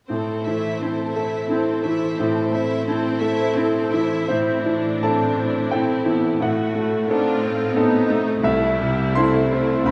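In a rubato 3/4 around 86 BPM with uneven beats, this passionate, brooding classical excerpt in A minor sets a clear, up-front grand piano melody with long sustain over an intense, lush viola section. A soft-attack violin section adds an expressive second line until 4.3 s, when a focused cello section takes up the bass in the background. The harmony moves from Am to Adim7 at 6.4 s and settles on Am/C, all bathed in a concert-hall reverb.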